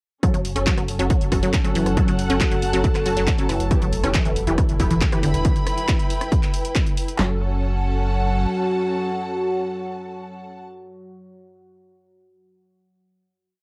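Opening at once on an overdriven four-on-the-floor techno kit with a heavy kick and punchy snare, joined by tape-softened analog hats, claps and rim clicks, this hypnotic, industrial peak-time techno piece drives along at 138 BPM in F# minor, with a squelchy, phaser-laced sawtooth blip pluck repeating its 16-step sequence, a thick saturated sub bass rumbling between the kicks, dotted-rhythm rave stab chords moving in parallel in the background, a warbling dark pad drone entering at 0.9 s, and a lush, close bowed string ensemble shifting slowly between F#m and Em, the pitched parts pumping to the sidechain and everything sitting in a cassette haze until the drums drop out around 7.2 s and the strings, pad and stabs hold a final F#m chord to 10.7 s.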